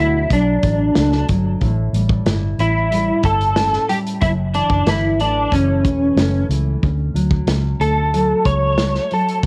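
An up-front electric slide guitar carries the melody in this laid-back, hazy indie pop and bedroom pop excerpt, its bright, slightly broken-up tone played with fingerpicks and compressed, then thickened by ensemble chorus, cassette tape, plate reverb and analog delay. Beneath it, a fingerpicked nylon-string guitar supplies full-bodied, deep classical accompaniment colored by subtle chorus, warbly pitch drift and cassette tape. A vintage muted fingered electric bass adds a dark, round, foam-muted low end with transformer saturation, while a loose indie drum kit enters at 0.3 seconds with hi-hat, a punchy kick and a medium-tuned snare, sitting up front in a small room. Set at 92 BPM in 4/4 with a straight feel in D major, the passage moves through Bm7, A7, F#m7 and Dmaj7. Light reverb and the home-recorded cassette character give the whole piece a lo-fi intimacy.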